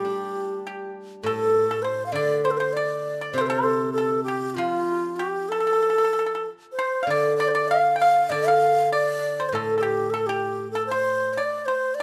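Wistful and graceful, this 12-second excerpt from a longer Chinese traditional chamber piece unfolds in a rubato feel around 99 BPM in D yu mode, with a breathy, reedy bamboo xiao carrying the melody up front in a straight, tongued tone. A dry, percussive pipa, plucked with fingerpicks, traces a second line, while a ringing, silvery steel-string zither supplies low accompaniment until 11.4 seconds. Close, detailed microphones and light reverb keep every plucked and blown detail crisp and intimate.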